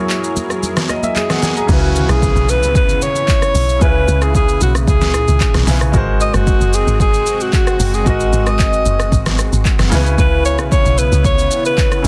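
A dense, heavily limited and nearly dry mix carries this hypnotic, deep amapiano cut at 113 BPM in C# dorian, where a brilliant grand piano and a lush, detuned pad with chorus, phaser and sidechain pumping open a short break over punchy electronic house drums and ringing, high-tuned congas, before a breathy, whispered alto saxophone with digital delay takes the melody from 1.2 seconds and a round, percussive log drum bass arrives with a background downlifter at the drop at 1.7 seconds, the harmony moving between C#m7 and G#9.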